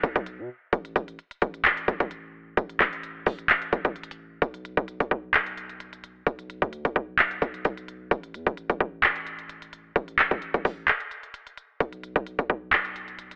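An up-front electronic trap kit leads this melancholic, menacing hip hop fragment, its hard-clipped kick, crisp hi-hats and handclaps driving a half-time feel from start to finish. Beneath it, a deep, boomy 808-style bass with a sine tone, a noise layer, a fast attack and a mellow decay sits low in the mix. The whole recording carries a heavily compressed, telephone-like radio quality with light reverb and digital ambience, and a brief break arrives at 10.9 seconds.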